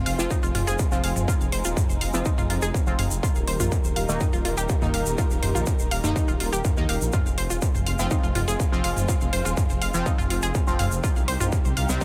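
Dark and hypnotic, this melodic techno excerpt in F minor at 123 BPM moves through Fm, Eb and Cm as a distorted, up-front electronic kick drives an overdriven techno kit of hi-hat and toms and a grainy egg shaker, while a menacing detuned saw bass with a filter swell, punchy unison pluck arpeggios with delay, nasal synth brass stabs with chorus and phaser set in the background, and woody, bowed string chords each pump to the sidechain in a dry mix.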